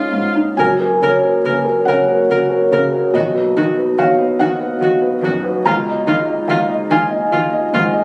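A gently swaying 6/8 pulse, stretched and loosened by rubato, carries this short neoclassical piano and strings passage, cut from a longer piece, with a tender, hopeful mood. A felt-muted upright piano sits up front with a soft, boxy, intimate tone, its thin felt and audible action noise giving the accompaniment a close, homely character. A single viola adds a clear, airy-bowed accompaniment with vibrato and an intense presence, while a solo cello enters at 0.6 s with a rich, expressive second line, sliding between notes with portamento. Beneath them, a dark analog pad holds sustained chords in the background, its detuned square, sawtooth and triangle waves and sub octave softened by a slow attack and long release and colored with chorus and phaser. The harmony moves from C#add9 to F#, then B, returning to C#add9 at 5.7 s. A moderate recital hall reverb surrounds the ensemble, though the sound was captured on a phone in the room, with club ambience audible around the players.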